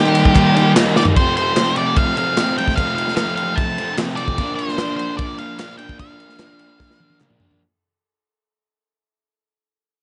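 A swaggering, rowdy garage rock clip opens at once on two electric guitars: a raw, double-tracked overdriven guitar picking a riff, and an octave-fuzz lead playing the melody up front, its distorted tone thickened by tape echo. The crunchy breakbeat kit joins at 0.1 s, a small-room acoustic set with a punchy kick, medium-tuned snare, toms and a ride, its saturated, gritty sound rolled off at the top with subdued cymbals. A very quiet group handclap, crisp and vintage, sits far beneath from 0.4 s. After an opening on Eb, a drum fill at 1.0 s leads into the longer second section, where the harmony moves to F and then Bb while the whole piece fades out. Another fill closes out the final moments from 6.8 s, all inside a light reverb with a slightly muffled top end.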